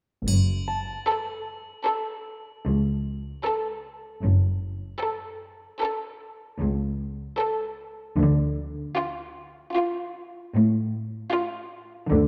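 A bowed violin section carries the melody from 1.1 seconds, its smooth, even tone shaded with vibrato, in this ominous, uneasy fragment of a suspense film score, moving at 76 BPM in a straight 5/4 and in F# harmonic minor. Beneath it, an up-front cello section and a lush, soft-attacked double bass section hold the low end throughout, while a close, dry triangle sounds briefly at the start and a ringing, fingerpicked Celtic harp adds a high glint until 4.6 seconds. The harmony sits on F#m before shifting to Dm at 8.2 seconds, all within a dark production and a moderate concert hall reverb.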